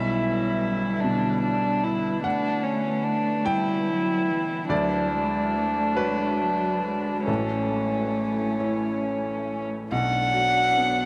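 Neoclassical piano and strings in a rubato 6/8, tender and hopeful, drifting through a vast, echoing space heavy with long reverb in this brief fragment of a longer piece. A dark, sul tasto violin carries the melody up front with light vibrato and a soft attack, while a warm cello shapes a close second line beneath it. A clear, woody upright piano, its action noise audible, supplies intimate accompaniment over a very quiet, detuned analog pad with chorus and phaser, as the harmony moves from G/B through Dmaj7 and Amaj7 to Bm at 9.9 seconds.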